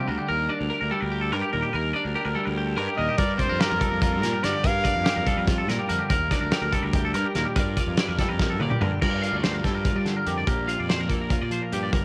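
This math rock and midwest emo excerpt moves in a wistful, intricate 7/8 with a straight feel, recorded at home on cassette in a small room. A clean, compressed twelve-string electric guitar rings out the chords from the start while a warm, twangy electric guitar picks arpeggios in a higher register, both carrying a hint of tape character. A fuzzy, overdriven fingered bass enters almost at once, adding a gritty edge beneath the guitars. A bright, up-front trumpet takes a short pop-style solo from 3.0 to 5.5 seconds, with vibrato and scooped notes. At 3.2 seconds a loose indie drum kit comes in, punchy in the kick, fat in the snare and dark in the cymbals, and it sits at the front of the mix. A drum fill carries the music into a closing section as the harmony shifts between lush major-seventh and minor-seventh colours.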